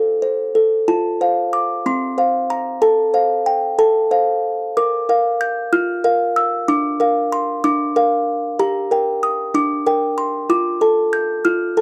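A classical lullaby for solo music box in F major, this dreamy, innocent piece moves in a gentle 6/8 at 63 BPM, tuned slightly high at A4 = 441 Hz. The music box sits up front and plays alone from 0.0 to 11.8 seconds, its delicate, tinkling plucked tones mellowed by a large box and ranging from C4 to G6 over a harmony that moves from F through Bb and Gm to Dm/F. The dry, close recording has a 1970s studio character and little reverb, and the passage is cut from a longer piece.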